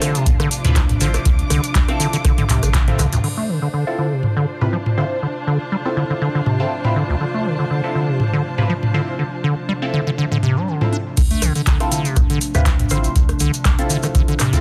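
A swung 121 BPM acid house groove in 4/4 on Dm7, trippy and playful, built on a booming analog drum machine with metallic hats, handclaps, rim clicks, toms and crash, while a squelchy, resonant square-wave acid bass riff sits up front with delay and band-passed, nasal chord stabs flicker through phaser and delay. A warbling, lo-fi pad holds dark sustained chords beneath a rich, bowed string section with vibrato that plays until 11.2 s, both pumping against the beat. The deep electronic kick, round sub bass and grainy maracas drive the opening and closing drops, with a drum fill at 2.5 s and a filter sweep on the pad across the middle section from 3.2 s.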